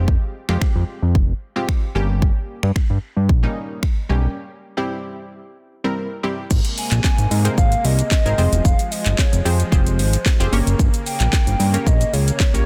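Bright, chorused chord stabs and a fat, detuned analog bass, both pumping from sidechain compression, open this confident, bittersweet dance-pop piece over an up-front house drum kit of punchy kick, cracking snare, metallic hats, crash, handclaps, finger snaps and shaker. After a break at 4.4 seconds, a smooth supersaw pad enters in the background at 6.5 seconds, and a hollow, woody clarinet-like synth lead with vibrato and dub echo carries the melody from 6.8 seconds, in a dense, heavily limited digital master.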